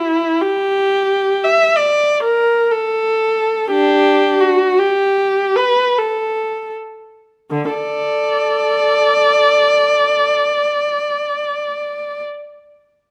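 A dark-toned viola carries this brief classical passage alone, bowed by a single player and placed up front, with a smooth top to its sound. The mood is serene and nostalgic, and the playing is free and expressive, flowing in 3/4 with a rubato feel. Vibrato and portamento colour the line as it moves between D3 and E5. Over the first 7.5 seconds the pace gradually slows, before a contrasting second section follows until about 11.5 seconds. A moderate recital hall reverb surrounds the instrument, and this excerpt is cut from a longer piece.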